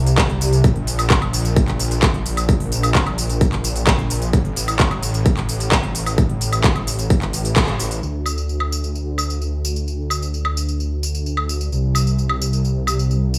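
This dry, close-sounding clip of festival progressive house, cut from a longer piece, sits in a small room with little reverb and runs at 130 BPM in a straight 4/4, tuned slightly flat of concert pitch. The mood is euphoric and emotional, opening straight into a drop that lasts until 8.0 seconds, where a band accent lands at 7.6 seconds before a new section carries on to the end. A thick, lush detuned saw bass holds the low end from A1 to D2, its saturated unison layers blending sawtooth, square and sine tones with a fast attack, sustained notes, chorus and sidechain pumping. An up-front, tape-warm big-room dance kit of crisp hats, handclaps, tambourine and woodblock plays throughout. A punchy electronic kick sits loudest in the mix, driving the drop until it stops at 7.7 seconds.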